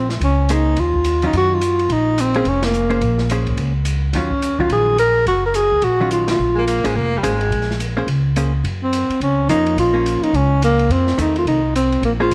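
A breathy, whispered tenor saxophone with tape echo and an up-front, thumpy upright bass open this late-night small-group swing and bop excerpt in Bb minor at 213 BPM, joined by a dark-cymbaled drum kit and a clean, compressed hollow-body guitar, while a mellow baritone saxophone slips in briefly at 6.5 seconds, just before the tenor pauses, and band accents land at 2.6 and 6.2 seconds over Bbm9 and Ebm9 harmony that moves to Gbmaj7 and F7, all in a small room with light reverb.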